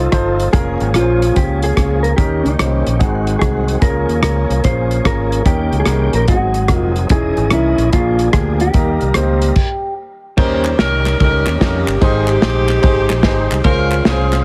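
A mellow, clean electric guitar carries the melody at the start of this jubilant, uptempo gospel excerpt, moving at 146 BPM in a swung 4/4. Beneath it, a dark, woody upright piano opens with a short fill and keeps up the accompaniment, while a thick, lightly overdriven tonewheel organ holds sustained chords in the background through chorus vibrato and a fast rotary speaker. A punchy fingered electric bass and a smooth soul drum kit with a tight kick and dusky cymbals sit up front. After a brief stop at 9.6 s, a warm saxophone section with vibrato, a soft attack and tape echo takes up the melody at 10.4 s, joined by crisp, close group handclaps, as the chords move through Eb7, Abmaj7 and Dbmaj7. The mix is dry and heavily compressed, giving it a punchy radio sound.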